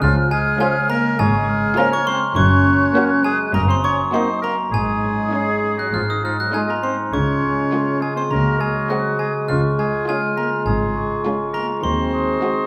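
A playful, whimsical cinematic film cue with a mischievous, quirky air, in which a sparkling, bell-like glockenspiel struck with hard plastic mallets carries the melody up front, joined by a rich violin section in the background, while a clear oboe, a mellow, hollow flute, a distant clarinet and a very quiet, woody second violin section weave second lines. A warm French horn section holds sustained chords, a bright concert harp rings out arpeggios, and a dark bassoon and a viola section with portamento fill in the accompaniment, all over a bowed cello and double bass section foundation. The violins, viola, clarinet and bassoon join at 0.6 seconds, the low strings drop out at 12.3 seconds, and the ensemble sits in a wet recital hall reverb in this short cut from a longer piece.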